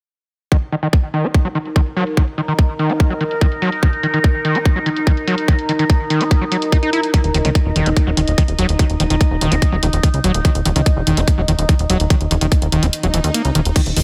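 This psychedelic trance excerpt opens at 0.5 seconds with a tight, up-front electronic kick, a layered garage kit of crash cymbal and low-pass-filtered hi-hats, and a screaming acid line in Eb minor at 145 BPM in a straight 4/4. The acid riff is squelchy, aggressive and bright, a resonant sawtooth sound with a filter sweep, fast attack and distortion, thickened by chorus and tape echo and pumped by sidechain compression. From 1.3 seconds an overtone-sweeping drone of sustained chords sits just behind it, wave-folded sawtooth, sine and triangle tones with a moving notch, slow attack and long release, bathed in chorus and its own reverb. At 7.2 seconds a punchy, funky analog bass joins, plucky and up front, its ring-modulated waveforms snapping with a fast attack before decaying. The kick drops out at 12.9 seconds, and a faint electronic swell follows in the background at 13.1 seconds, keeping the driving, intense mood poised under a light overall reverb.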